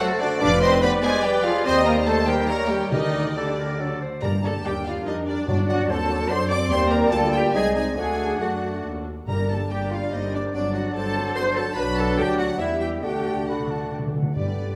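Dramatic and stormy, this quick classical-period symphonic movement in triple time with a rubato feel sets a rich, vibrato-laden violin section on the melody over a second violin line, an airy silver flute and a distant clarinet, while a lush viola section, a mellow bassoon and mellow sustained French horn chords fill the accompaniment, bowed cellos and double basses anchor the bass from 0.4 seconds, a trumpet section adds stabs until 4.0 seconds, and round, soft-mallet timpani enter at 2.9 seconds and close with a fill from 13.0 seconds, all in a reverberant recital hall.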